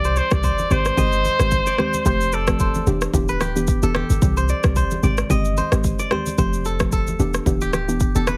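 A heavily compressed, radio-style mix with light reverb frames this breezy, romantic afrobeats excerpt, where a vintage, vibrato-laced trumpet carries the melody with delay until 2.9 seconds over a detuned, wave-folded pluck with chorus, a crisp fingerpicked kora riff with delay, a boomy sine 808-style bass, an up-front electronic drum kit of deep kick, rim click and shaker, and very quiet low-tuned congas that enter at 0.6 seconds, all set to a light sixteenth-note swing as the chords cycle through C, Abmaj7, Fadd9 and Em7.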